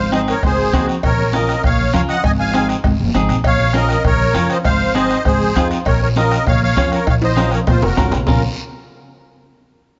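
Cumbia with a danceable, passionate drive, carried by a reedy, shimmering musette accordion melody that sits close and up front over a woody, growly pizzicato upright bass and a bright, twangy clean electric guitar accompaniment. Bombo with a soft beater, distant thick-skinned congas, a raspy guiro in the background and very quiet ringing cowbell and timbales fill out the percussion, with a drum fill from 7.1 to 8.3 seconds. The chords move between Ab and Bbm in a light reverb, in a short cut from a longer piece.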